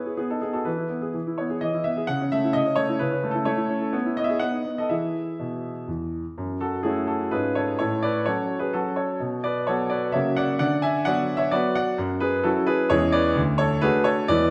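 In a lilting three-beat metre pulled gently by rubato, this playful, graceful classical-period sonatina unfolds on a solo concert grand piano, cut from a longer piece. The piano sounds clear and up front, with a deep bass and an open character, ringing into the wet reverb of a recital hall. Its opening phrase settles back home before the music turns toward a new, more searching harmonic area at 6.4 s and continues through 14.5 s.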